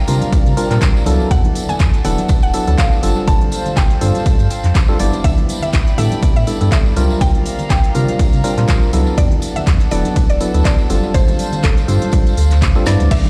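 Played over a big sound system in a bare room, this moody deep house cut is built on a punchy, tape-kissed electronic kick and a deep, round sine sub bass with tube saturation and sidechain pumping, joined by a layered kit of woody snare, smooth hats, handclaps, ride and crash that lands a fill at 12.9 seconds, very quiet ringing congas and a jingly tambourine in the background, while dark, hollow organ stabs with cassette-tape color and analog delay and a soft, flute-like pumping pad carry suspended ninth chords alongside a bright, woody FM mallet pluck melody tucked behind them with chorus and delay.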